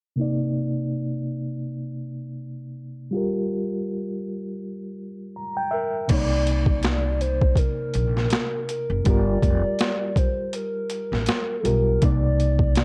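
An overdriven, reedy electric piano with fast tremolo and a cassette-tape haze opens this hazy, melancholic lo-fi hip hop piece at 81 BPM in C minor, moving between Cm9 and Gm7 under a filter sweep and rounding off its opening stretch with a fill, before a hollow, clarinet-like synth lead with chorus, phaser and vibrato enters at 5.7 s and a woody pizzicato upright bass joins a gritty, compressed boom bap drum kit with a thumpy kick, high-tuned snare and swung 16ths at 6.1 s, the mix carrying light reverb and a muffled tape sheen.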